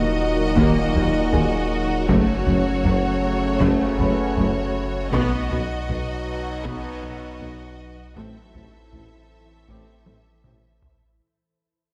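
Bathed in a moderate scoring-stage reverb, this tense, vast cinematic excerpt of hybrid orchestral and electronic film score moves at 79 BPM in 4/4 over Ebm, Gbm, B and Am, fading out throughout as a lush violin section carries the vibrato melody above a second, clear and distant violin line, while a bright trombone section, a smooth-topped French horn section and a calm, detuned organ-like additive pad hold sustained chords, a soft round filter pluck with chorus spins quiet arpeggios, a pure sine sub bass and a felt-muted upright piano with audible action noise add deep and intimate textures, and from 0.6 s a rich viola section, a mellow tuba, a double bass section and a very quiet cello section join alongside compressed, saturated taiko drums struck with hard sticks, which close with a fill at 10.1 s.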